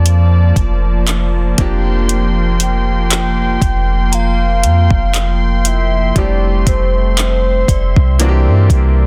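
A tender, dreamy contemporary R&B fragment at a slow 59 BPM opens with a round, octave-layered synth lead carrying the melody through chorus, phaser and digital delay, over a brilliant baby grand piano, a smooth, detuned analog pad with chorus, a deep 808-style bass sitting up front, and a very quiet, inharmonic FM chime. A produced electronic drum kit of soft kick, metallic hi-hats and handclaps enters at 0.1 seconds, overdriven and up front, with a gentle swing on the sixteenths. The chords move from Bbmaj7/F through C7sus4/F and Am7/F to C9 in a dry, dense, heavily limited modern mix.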